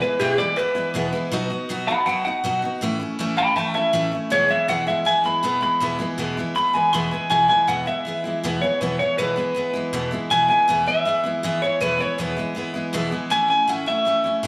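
A straight 4/4 pulse carries this rollicking, upbeat rock clip, cut from a longer live gig heard through the venue's PA with a moderate club reverb. Up front, a twangy, slightly broken-up electric guitar through a small old amp carries the melody, taking a clean solo over the first 7.3 seconds, its bright tone steeped in spring and plate reverb, slapback echo and analog delay. Beside it, a bright, full-bodied steel-string dreadnought acoustic guitar picks out the accompaniment through the whole clip, moving from E through B and A and back to E before landing on A near the end.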